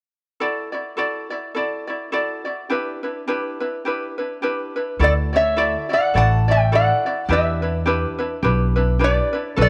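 A nasal, metallic yet mellow metal-body resonator slide guitar, played with fingerpicks, takes the melody at 5.0 seconds in this relaxed, languid Hawaiian excerpt at 105 BPM with a swung feel in D major, joined at that moment by a woody pizzicato upright bass on steel strings, after a light, fingerpicked ukulele has played alone from 0.4 seconds over Dadd9 and Em7 chords, all set in a small room with light reverb.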